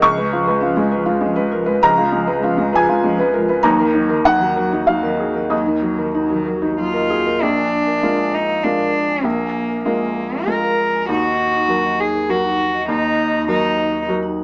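Neoclassical piano and strings in a fragile, reflective 3/4 with a rubato feel, where a felt-muted upright piano plays soft, intimate accompaniment up front beside a sul tasto cello carrying a pure, floating second line, while a ringing vibraphone with soft mallets and slapback echo traces airy arpeggios and a saturated sub bass sits deep and thick in the background, all heard through a moderate studio reverb and a small-speaker sound in this section cut from a longer piece.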